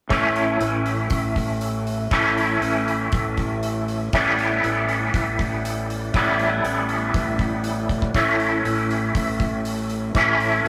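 Trippy and kaleidoscopic, this short cut from a longer psychedelic rock piece moves at 120 BPM in a straight 4/4 in A mixolydian. A bright, twangy electric guitar riff sits up front through a rotary speaker, over a round, punchy, overdriven fuzz bass and a dry, damped 70s drum kit of hi-hat and tight kick, while the harmony shifts from A to Em/A at 4.1 seconds and back to A at 8.1 seconds, heard in a small, rough rehearsal room with warm saturation.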